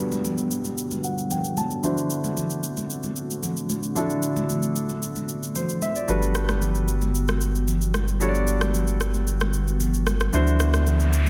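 A round, mellow sine sub bass arrives at 6.1 seconds and sits up front, giving this relaxed, warm amapiano excerpt its low weight at 113 BPM in G major, tuned slightly flat. From the start, an open concert grand piano carries the accompaniment with short sustain and a deep low end, adding a fill around 0.8 seconds. Beneath it, a dark, moody pad of detuned sawtooth unison and sub-octave layers holds slow-attack chords, with chorus and built-in reverb. Both piano and pad pass through a low-pass filter, and a filter sweep runs across the whole passage. A layered electronic shaker and rim click keep a straight 4/4 feel, joined by bright, high-tuned congas struck with hard hands that sound distant, in a large room. Background downlifter and noise sweep effects frame the opening and the close, with a noise sweep at 10.8 seconds, as the harmony moves between Gmaj7 and D7 under light digital ambience.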